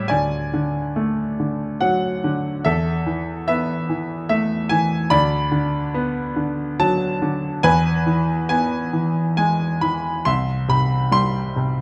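Warm and peaceful, this short excerpt of lyrical classical solo piano moves in a rubato 3/4 at around 67-75 BPM in D Lydian, tuned to A4 = 439 Hz. The grand piano sounds clear, worn and natural, sitting up front and spanning C2 to C6 as it passes through D, Esus4, Bm/D and E before reaching C at 10.3 seconds. A moderate recital-hall reverb with a 1.6-second decay surrounds the instrument.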